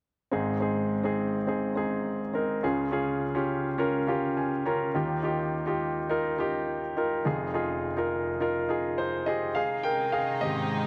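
This pop excerpt moves at 104 BPM in a straight 4/4 feel in Ab major, with a hopeful, warm mood. A clear, polished baby grand piano sits up front and carries the accompaniment throughout, spanning from deep bass notes to bright upper registers over a progression of Ab, Db, Ebadd9 and Fm7 before returning to Ab. Around 3.8 seconds the piano adds a short fill, and at 9.6 seconds it moves into a brief solo passage. At that same moment a soft-attack studio string section enters with pure, floating bowed chords, sitting close but well beneath the piano. A moderate plate reverb gives the sound a lingering, spacious tail.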